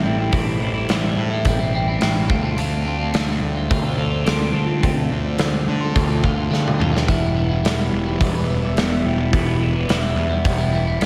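Quiet-loud alternative rock in a straight 4/4, this brief excerpt from a longer piece has a dark, angsty mood. A bright, clean twelve-string electric guitar plays compressed, twangy arpeggios through a phaser, sitting up front from the first moment. Beneath it, a fuzz-soaked picked electric bass adds overdriven grit, while a big rock drum kit joins at 0.3 seconds with a tight kick, a medium-tuned snare, hi-hat and toms, its mid-forward tone rolled off at the top. A drum fill at 6.5 seconds leads into the harmony's shift from Am7 and Dm7 to Em at 7.1 seconds. Moderate lush hall reverb gives the whole a big arena sound.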